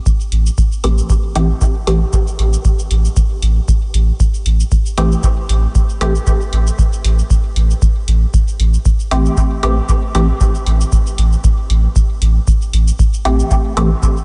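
A deep, tape-toned electronic kick sits up front from the start, joined by layered dark shaker and hi-hats, a clean sine sub bass pumping on A1, and a muted, detuned dub chord stab with phaser and dub echo outlining an Am7 in this hazy, nocturnal 116 BPM dub techno excerpt in A minor, swung on the 16ths, dry and dusky at the top.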